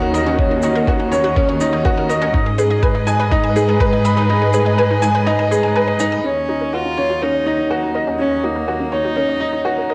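Piano and strings electronica in Eb minor at 123 BPM, hypnotic and melancholic, this cut from a longer piece sets a bright, worn grand piano riff up front over lush background string chords moving from Ebm7 to Abm, a detuned sawtooth pluck arpeggio with chorus and analog delay, a dark, distant bowed cello section bass that pumps with the sidechain, a low-passed shaker, and a muffled, thumpy kick that stops at 3.9 s, before a close, smooth solo viola takes the melody at 6.2 s, with cassette tape coloring most parts and a moderate spring reverb giving the home recording its space.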